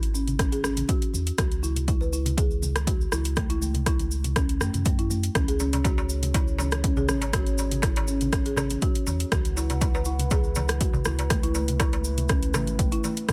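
Afro house at 121 BPM in C# minor, this short excerpt from a longer piece carries a warm, earthy mood over a straight 4/4 groove. A deep, round sub bass pumps under sidechain compression from the start, joined at 0.4 seconds by a punchy, overdriven electronic kick sitting up front, while a layered deep house kit adds metallic hi-hats and rim clicks with its own overdrive. A woody, rustic marimba played with medium mallets spins arpeggios through a digital delay, pumping alongside the bass. Grainy cabasa plays as low-tuned congas with a thick-skinned tone sit in the background. At 5.4 seconds a dark analog pad enters with slow-attack sustained chords, its detuned, wave-folded tone thickened by lush chorus, and a crisp, close, dry darbuka joins at 5.6 seconds. The harmony moves from C# minor through A6/C# and power-chord voicings to A/C#, all framed by a light reverb.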